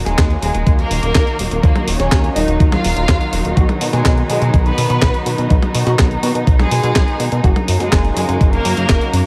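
Italo disco at 124 BPM in a straight 4/4, this romantic, playful excerpt moves from D# minor through B to F#. A thumpy, up-front electronic kick anchors a clean 12-bit drum machine of handclaps, hi-hat, toms and a medium-tuned snare, beneath a glossy, chorused synth bass built from pulse-width-modulated and sawtooth tones with a filter pluck. Dark, veiled con sordino strings sustain chords, while a rich, distant violin section carries the vibrato-laden melody through tape echo, all set in a digital ambience.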